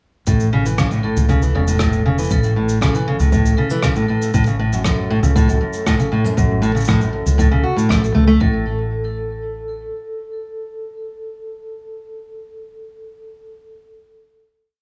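Delicate and pastoral, this short folktronica piece at 118 BPM in A major sets a boxy, up-front parlour-style fingerpicked steel-string acoustic guitar looping a six-step arpeggio that drifts against the bar over A and F#m/A, while a bright, ringing hard-mallet vibraphone with fast motor vibrato repeats its own five-step sequence further back, a foam-muted fingered electric bass glides through long notes, a deep, soft, tape-warm electronic kick sits in the background, and a distant, roomy shaker and rim click add a clicking found-sound beat in a small room ambience, the groove running from 0.3 seconds until 8.4 seconds before the vibraphone rings on past the other parts to close at 14.8 seconds.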